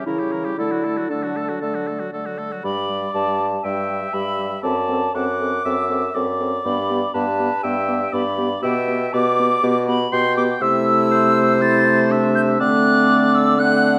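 Cheerful and spirited, this quick classical-period movement for wind quintet moves with a rubato feel and is cut from a longer piece. A pure, distant flute with vibrato and a crisp attack carries the melody over a close-miked oboe second line, while a clear French horn and a mellow, soft-edged clarinet supply accompaniment, and an up-front bassoon enters at 0.1 seconds to anchor the bass. The dark, warm recital-hall sound adds a wet reverb, and the harmony opens on a C#dim7 chord and closes on D7.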